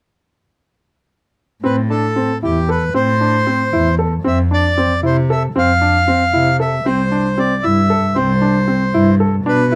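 Contemporary instrumental chamber music in 5/8, this short excerpt moves at 230 BPM counted in eighths, with a straight, hypnotic and restless feel in A minor. An accordion carries the melody up front, its tone reedy and smooth, while a baby grand piano plays arpeggios with a natural, short-sustained sound. Beneath them a single bowed cello holds the bass, dark and intimate, played sul tasto with vibrato, a soft attack and a close, up-front presence. All three parts enter together at 1.6 seconds and play through to 9.8 seconds, moving from Am to Fmaj7(no3) and on to C. The recording uses close, detailed microphones and light reverb, and the passage is cut from a longer piece.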